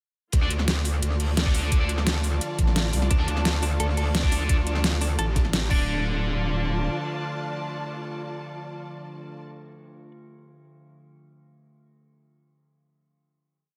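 A distorted, chorused wobble bass leads this dark, aggressive and futuristic technical drum and bass piece, its metallic tone pumping against the kick through a drop that runs from 0.3 to 5.9 seconds. Up front, a knocking electronic kick drives the broken beat, joined by an overdriven electronic kit with a deep snare, metallic hats and crash, while a very quiet, gritty acoustic breakbeat loop with rolled-off cymbals sits underneath. At 2.6 seconds a thick, growling FM bass cuts in briefly with chopped phrases. Muted, con sordino strings lay down lush, slowly shifting chords, and an eerie, inharmonic FM drone with a slow attack hovers in the background. A bright, double-tracked distorted guitar throws out sparse, echoing power-chord stabs, while a clean, scooped guitar repeats an eight-step arpeggio with delay. By 5.9 seconds the drums have fallen away and the wobble bass trails off shortly after, and the piece closes on a sustained final note carried by the strings, drone and echoing guitar in a small, lightly reverberant room.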